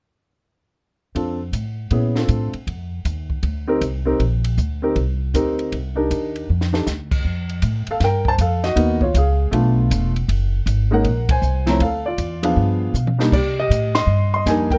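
Sophisticated and relaxed, this excerpt from a longer jazz piano trio piece swings at 158 BPM in 4/4, centred on B-flat major. A warm concert grand carries the melody from 1.1 seconds, its tone natural and up front with deep bass and short sustain, while a woody, thumpy upright bass played pizzicato on steel strings joins almost at once and sits close in the mix. A compact cocktail drum kit sits a little further back, dry and acoustic, with dark cymbals, a high-tuned snare and a punchy kick, adding drum fills around 6.5 and 12.9 seconds. The harmony opens on a B-flat major seventh over F and moves through suspended and minor colours. At 7.2 seconds it shifts into a new section of unexpected chords, marked by full-band accents. The production is dark and warm, with little reverb, keeping the trio close.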